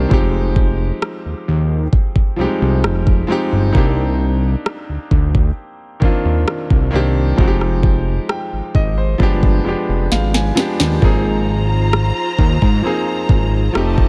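A bright, vintage-toned concert grand piano and a fat, detuned sawtooth bass with a filter sweep open this longing, late-night contemporary R&B fragment, joined by a smooth, produced drum kit with a knocking kick, rim clicks and a sharp snare, all sitting up front in a small room over slow Fm9 and Cm9 harmony. Piano and drum fills lead through a tense G7b9, and at 11.0 seconds a distant, lush studio string section enters with bowed, vibrato-rich sustained chords over an Ab69 resolution.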